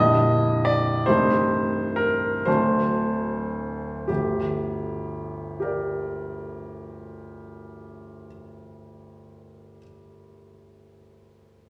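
Classical romantic character piece for solo piano in G minor, passionate and brooding, unfolding in a rubato 6/8 at 34-53 BPM in dotted quarters, where a clear, intimate baby grand with long sustain and audible action noise sits up front, spanning Bb0 to Eb5, slowing through its opening 4.1 seconds over Gm/Bb, Am7b5/C and D7 before settling on Gm, all bathed in a wet recital-hall reverb of a church or concert hall in this brief passage cut from a longer piece.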